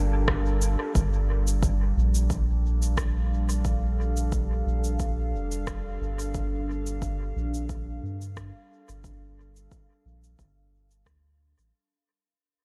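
Spacious and meditative, this ambient dub excerpt floats on a warbling, nostalgic pad of detuned sawtooth and triangle tones, its slow-attack chords lo-fi and mellow under chorus, phaser and built-in reverb, resting on a Gm7 harmony. Up front, a soft, round dub sub bass holds deep sustained notes, while a tape-warm electronic kick, layered and re-recorded in a small room, sits in the background from 0.3 seconds. An electronic rim click and cabasa carry a dub echo, all set in a digital ambience as the music fades out from 1.0 seconds to the end at 11.7 seconds.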